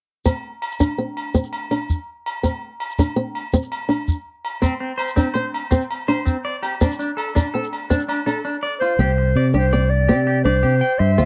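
The recording is dry and close, with the feel of a 1970s studio and little room sound. It is a sunny, joyful highlife guitar-band piece in 12/8 at 110 BPM with a straight feel, cut from a longer piece and tuned slightly below standard pitch. A fingerpicked old ladder-braced acoustic guitar sits up front, its woody, boxy tone and dark old strings holding a Csus2 chord that moves to D5. A grainy, mellow shekere also sits up front, while ringing agogo bells sound distant, as if in a large room. A clean, twangy electric guitar enters with arpeggios at 4.6 seconds, touched by spring reverb and tape echo. Near the close, a breathy, whispered clarinet takes the melody at 8.8 seconds with light vibrato and scooped notes in an intimate jazz style, and a punchy fingered electric bass arrives at 9.0 seconds as the music returns to Csus2.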